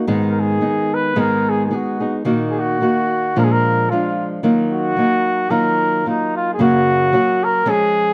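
Mexican folk mariachi in Eb minor, passionate and dramatic, moving at 111 BPM in 2/4 with a rubato feel. A small, fresh-stringed nylon-string guitar, fingerpicked and up front, lays down chords through Abm, Ebm/Bb, Bb7 and Ebmadd9, while a mellow, distant-sounding trumpet in a classical solo style enters at 0.3 seconds to carry the melody. Close, detailed microphones and light reverb frame this short fragment, which shifts onto an F# chord at 6.6 seconds.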